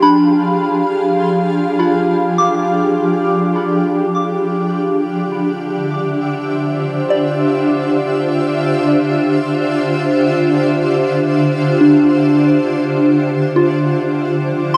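In a slow, straight 4/4 at 51 BPM, this serene, reflective ambient fragment pairs a cloudy, evolving granular pad of sustained, up-front chords with a soft, pure FM bell playing arpeggios through chorus, phaser and tape echo, all suspended in a vast, echoing reverb of 7.7 seconds as the harmony drifts from Fm6 to Dm11 at 4.7 seconds and settles on F5 at 14.1 seconds.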